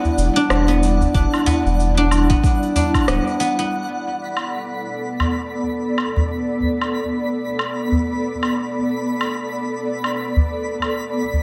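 Hypnotic and meditative, this organic downtempo fragment is cut from a longer piece and moves with a gently swung feel over a change from Em7 to Bm7. An ethereal, airy pad holds sustained chords throughout, its detuned unison layers softened by ensemble chorus, tremolo and sidechain pumping. High above, a faint twinkling granular texture adds a sparkling octave-up shimmer. Up front, a bright, silvery guzheng plays ringing arpeggios with gritty 12-bit sampler color and analog delay until 6.7 seconds, while a small acoustic udu carries the percussion through its own delay. An electronic shaker, rim click and woodblock, re-recorded in a large room, sit alongside, and a round sine sub bass and a deep electronic kick anchor only the opening stretch, with the bass stopping at 3.2 seconds, all within an echo-heavy mix and moderate spring reverb.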